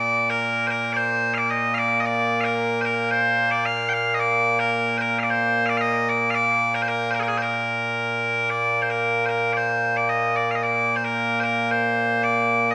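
Proud and stirring, this short cut from a longer Scottish traditional pipe tune moves at 112 BPM in a straight 4/4, set in Bb major. Loud solo bagpipes carry it from start to finish, their bright, piercing tone sounding continuous and up front across a range from Bb2 to G5. A moderate reverb, like a scoring stage, gives the pipes a sense of space as the opening strain repeats at 8.5 seconds.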